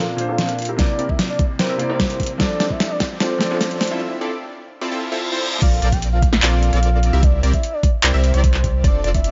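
A lush, bittersweet future bass excerpt in half-time, where a round, dark octave-layered synth lead and a detuned supersaw stab pump over a thick saturated sub bass and overdriven dubstep drums with a knocking kick, while a clear, intimate grand piano drops out at 4.0 s, a very quiet riser and reverse cymbal lead into the drop at 5.6 s, and a detuned unison pluck arpeggiates in the background.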